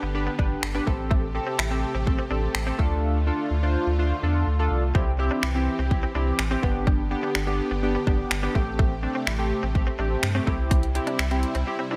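A punchy, up-front pop drum kit drives this confident dance-pop passage at 125 BPM in straight 4/4, its layered electronic kick, hi-hat and finger snaps bathed in gated reverb; the drums drop out between 3.0 and 5.0 seconds and break off at 11.7 seconds. Beneath them, a deep, round sine sub bass holds the low end with a fast attack and sustained notes, pumping with the sidechain. A glossy, retro chorused polysynth, built from detuned pulse and sawtooth waves with pulse-width modulation and a filter sweep, carries the mellow accompaniment up front, also breathing with sidechain pumping. A lush, slow-attack supersaw pad with a long release sustains bright chords under a subtle chorus, while a twangy, clean, direct-recorded electric guitar picks a compressed riff through an ensemble chorus in the background. The harmony moves through G, Am7, Dm and C, tuned to A4 = 441 Hz, and the light reverb and bright 1980s-style digital production give this excerpt, cut from a longer piece, a driving, polished sheen.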